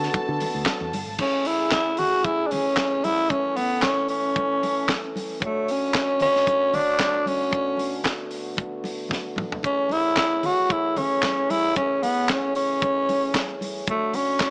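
A celebratory disco groove opens on a D chord, with a rich, bowed string section and a picked electric bass run through an envelope filter playing only for the first 1.2 seconds, over mellow French horn chords and a tight, dry funk drum kit with a high-tuned snare, handclaps and toms. Congas enter in the background at 0.1 seconds, damped and thick-skinned under soft hands. At 1.2 seconds a growling tenor saxophone takes the melody up front, its dark, breathy subtone also raspy and gritty, with scooped notes and vibrato in a jazz style. The horns hold sustained chords beneath it as the harmony moves between Amaj7 and Dmaj7, and the drums play a fill from 9.1 to 9.7 seconds. Light studio reverb and a small-speaker sound give the joyful passage a compact, intimate feel, and the music is cut from a longer piece.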